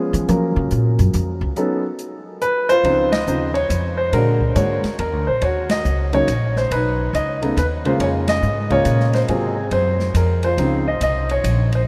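A woody, up-front upright bass, plucked on steel strings, takes a solo over the first 2.8 seconds of this sophisticated, relaxed jazz piano trio piece in a lilting swung 3/4, cut from a longer performance. A warm grand piano carries the melody up front, joined by an airy, polished acoustic drum kit with dark cymbals, a medium-tuned snare and a boomy kick, as the trio hits band accents through rich chords such as Dbmaj9, Bb7alt and Ab13. A huge ambient reverb places the group in a vast, echoing space.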